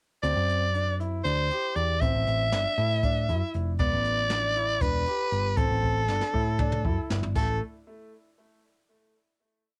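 In a driving 7/8 groove, this brief, brooding progressive piece sets a raspy, gritty soprano saxophone melody built from motifs over a clear grand piano ostinato treated with tape echo, a round, punchy hollow-body bass riff and brushed drums with dark cymbals and a boomy kick, a drum fill from 5.8 to 7.4 seconds leading to a final note that rings until 9.1 seconds on a lightly reverberant home cassette recording.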